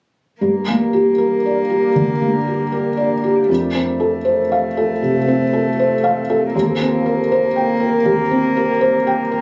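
Captured on a phone in a compressed room with a club-like reverb, this fragile, longing fragment of neoclassical piano and strings drifts in G minor at a rubato 78 BPM, where an intimate felt-muted upright piano sits up front with audible action noise, a single distant cello bowed sul tasto floats a pure second line, and from 1.2 seconds a deep, warbling pad with chorus holds moody sustained chords in the background over Gm, F and Cm7/Eb.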